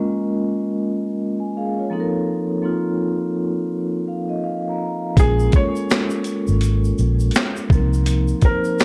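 A dark, small-room lo-fi hip hop excerpt in Bb minor at 83 BPM, with a nostalgic, reflective mood and swung 16ths, opens on a mellow, ringing vibraphone played with soft mallets, moving between Bbm7 and F7sus4 through a low-pass filter. At 5.2 seconds a gritty, compressed boom bap kit with a thumpy kick, high-tuned snare, handclaps, hi-hat and shaker arrives up front, joined by a round, punchy foam-muted electric bass and a grainy tube shaker tucked in the background. Above them, a felt-muted upright piano carries a short, intimate melody with audible action noise, softened by a low-pass filter and tape echo.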